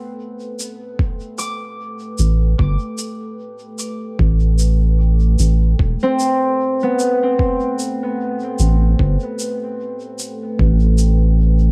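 Ambient dub with a deep, hazy mood, built on a single chord held by a moody, full-bodied sawtooth pad that fades in with chorus and its own reverb. A ringing, fingerpicked Celtic harp plays arpeggios through tape echo until 10.0 s, while a natural acoustic shaker and a muffled, thumpy electronic kick drum, both carrying a cassette tape character, keep time, and a round, sine-like analog bass enters up front at 2.2 s. The recording sits in studio reverb and has the feel of a home cassette recording.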